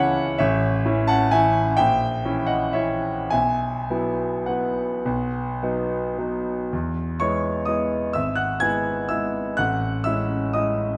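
Set in a lush concert hall with a long, wet reverb and a softened top end, this brief passage lifted from a longer piece is a graceful, elegant classical piano waltz in 3/4 with a freely breathing rubato feel. A solo concert grand, clear and natural and placed up front with a deep bass, spans G#1 to G#6 across the whole 11 seconds. The harmony drifts through A, A#dim7, Bsus4 and B before settling at 6.7 seconds into a second phase that moves from E through E/G# to a closing Amaj7.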